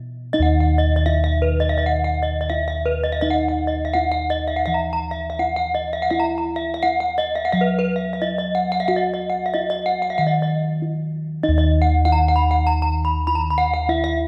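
A bright bronze metallophone shines in this hypnotic, brilliant Balinese gamelan excerpt, ringing up front with arpeggios struck by a horn mallet. Its paired tuning gives the high, airy tones a shimmering beat. Beneath it, bossed gongs played with padded beaters supply a round, mellow bass, soft yet close, with a metallic beating of their own. The gongs sound from the start, and the metallophone joins a moment later at 0.3 seconds. After a brief break around 10.5 seconds, a new section begins at 11.4 seconds and carries on until the cut. A moderate recital-hall reverb lets both instruments bloom in the space.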